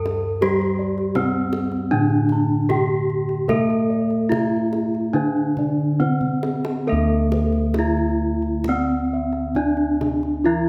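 A bronze metallophone carries the melody up front, struck with a wooden mallet, its paired tuning producing shimmering beats and a vintage, band-limited tone. This short cut from a longer Javanese gamelan piece in D slendro moves at a serene 67-82 BPM in a straight 4/4. Above it, bossed gongs spell out bright, round arpeggios, while a lower set of bossed gongs holds the bass with an airy, beating resonance. A second metallophone, played with a horn mallet, fills in the accompaniment with a close-miked, dry and full sound. A tight kendang drums in a live room and plays a fill from 6.0 to 6.9 seconds that leads into a new section, all set in a moderate scoring-stage reverb.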